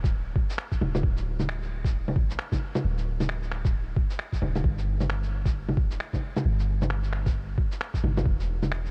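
Future garage at 133 BPM in 4/4 with a 60% swing on the sixteenths, this ghostly, wistful fragment cut from a longer piece sits on a soft, round 808-style bass, deep and dark with a fast attack and decaying sine tone, given tube saturation and sidechain pumping, playing up front from D1 to A1 throughout. A pitched-down, muffled electronic kick with a thumpy, compressed, sampler-style character runs until 8.4 seconds, while an electronic shaker, finger snaps and bongos, also pitched down and tape-warm, carry on to the close at 8.9 seconds. The drums sound re-recorded in a small room, and the dry mix has a cassette-tape grain and a faint mains hum.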